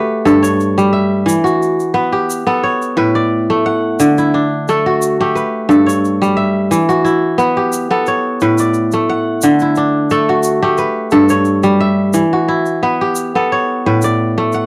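Hypnotic and joyful, this short cut from a longer piece of West African traditional string music moves at 88 BPM in a straight 4/4, centred on D major. The kora carries the whole passage with fingerpicked arpeggios from G2 to F#5, its acoustic tone ringing and crisp and placed up front in the sound. A tube shaker enters at 0.3 seconds as percussion, grainy and bright with the feel of a small room, sitting far back beneath the strings. The harmony cycles steadily through G, Em, A and D, repeating the pattern so that the music circles in a trance-like loop. The recording has the dry, close character of a 1970s-style studio.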